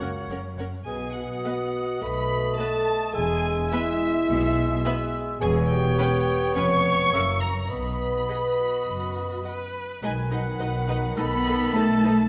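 Playful and quirky, this whimsical cinematic film cue in B major moves at a straight 104 BPM in 4/4, with a rich, focused chamber violin section carrying the melody over a darker, expressive second violin line, an airy, distant flute ensemble and a light-vibrato oboe, while a viola section and a present solo bassoon accompany, a mellow, close-miked French horn section holds loose sustained chords, and woody cellos pair with double basses with soft-attack portamento on the bass, all set in a scoring-stage reverb in this brief cut from a longer piece.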